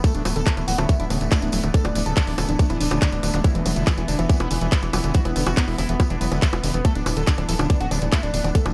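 A tight, up-front electronic kick drives this straight 4/4 psychedelic trance excerpt at 141 BPM, layered with a garage kit of bongos, handclaps and hi-hat and a jingly, band-limited tambourine in the background. Underneath, a punchy sequencer bass built from sawtooth and square waves with ring modulation and a filter pluck enters at 0.1 seconds and drives the low end, while a very quiet formant-sweep wobble bass surfaces briefly, returning from 4.3 to 7.8 seconds. A gritty, guitar-like overdriven lead carries the melody with vibrato, phaser, delay and sidechain pumping, set against a squelchy, resonant acid line whose distorted riff sits in the background with chorus and delay. A bubbling texture of random filter steps holds sustained chords, and an ethereal, airy pad hovers very quietly above, both bathed in reverb as the harmony moves from D to E and back to D. A tiny electronic zap at 3.3 seconds adds a brief flicker to the hypnotic, psychedelic mood, all set in a digital ambience.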